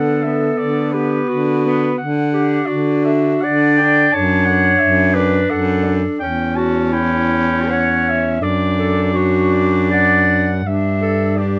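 In a rubato 3/4 that drifts between 75 and 89 BPM, this serene classical fragment for single-reed quartet sets a dark, vintage-toned soprano saxophone with light vibrato on the melody above a smooth-topped clarinet carrying the second line. Beneath them, a distant, roomy tenor saxophone supplies accompaniment while an up-front baritone saxophone, soft in attack and lightly vibrato, anchors the bass. The harmony moves from Bm/D through D and Em69 to Em7/G under light reverb across its 11.6 seconds.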